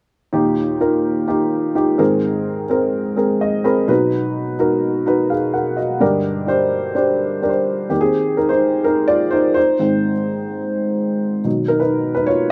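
Pop in Eb major at 127 BPM, this uplifting, brief cut from a longer piece features a lone upright piano, mellow, woody and slightly detuned, with audible action noise, long sustain, a slapback echo and light reverb, placed up front and intimate as it moves from Ebadd9 through Abadd9, B and Gm, adds a fill at 3.2 seconds, and takes a solo from 7.9 seconds to the end.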